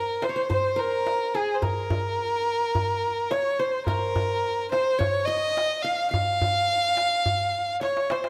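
Soulful and melancholic, this short passage of Arabic maqam ensemble music moves in a straight, steady 4/4 feel. A single bowed violin carries the melody up front, its tone dark and woody with a singing vibrato. Beneath it, a plectrum-plucked qanun traces a second line in the same register, its triple strings giving a bright, glinting edge at a softer level. A metal-shell darbuka enters at 0.2 seconds, played with hard hands and recorded close, so its strokes sound crisp, large and deep, and it closes with a drum fill from 7.8 seconds. A moderate scoring-stage reverb lends the ensemble an open, spacious setting.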